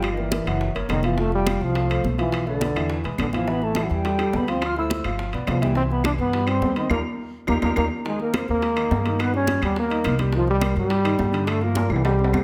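Bright, high-tuned congas, tight bongos, ringing metal-shell timbales and distant claves drive a lively, sunny Afro-Cuban jazz groove at 210 BPM in straight 4/4, with a dark, thumpy gut-string upright bass up front and an intimate grand piano with audible action noise and long sustain filling in the chords. A mellow, breathy trombone carries the melody with light vibrato, while a pure, hollow concert flute with slapback echo plays a second line in the background, set in a large studio reverb. A band accent from 6.9 s and a drum fill lead into a shift to Ab major at 8.1 s, and another fill arrives at 11.8 s.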